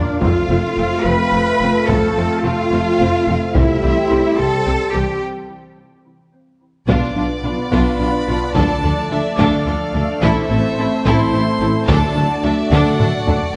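Tense and brooding, this hybrid orchestral and electronic film cue in 6/8 layers a dark, distant violin section, intense violas, mellow horns, a bright, evolving sawtooth pad with chorus and a faint tine-like synth pluck over smooth, close cellos and expressive double basses, while background taiko struck with hard sticks fall silent at 4.1 seconds and stay out through a break from 5.2 to 6.9 seconds, after which they return as a focused violin section, a single distant violin with delay and a very quiet tuba join in a moderate scoring-stage reverb.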